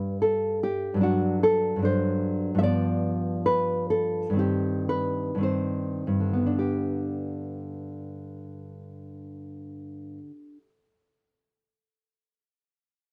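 A nylon-string guitar plays alone and up front, its thumb-plucked classical tone sounding warm and sunny in this short romantic piece cut from a longer work. The free, rubato phrasing in two slows down between 1.8 and 6.6 seconds as the harmony moves from G through D7 and G7 to a C minor over a G bass, then settles back on G as a new passage begins. The close, dry studio sound has a 1970s character and a modest booth ambience.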